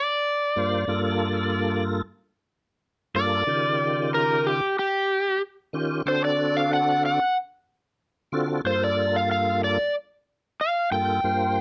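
A bright, overdriven electric slide guitar opens this brooding, smoky minor-key blues fragment at 93 BPM in G minor, carrying the melody up front over Gm7, Eb7 and D7#9 changes, joined at 0.6 s by a full, lightly overdriven tonewheel organ whose slow rotary speaker and chorus vibrato fill the accompaniment, all captured in a dry, close 1970s-style studio sound with light reverb and tuned slightly flat to A4 = 437 Hz.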